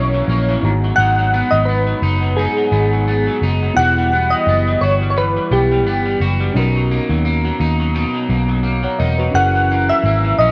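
A gently swung 4/4 groove at 86 BPM carries this hazy, nostalgic bedroom-pop fragment in B major, moving through F#7, G#m7, Emadd9 and Bmaj7 across its 10.5 seconds. Up front, soft, rounded synth keys with a sine-like tone carry the melody through analog chorus and tape echo, beside a dark, punchy, foam-muted electric bass. Behind them, a bright, twangy electric guitar on the verge of break-up shimmers with lush chorus and vibrato, while a reedy, worn, slightly out-of-tune electric piano sits far back with a cassette-tape tint, all in a light reverb.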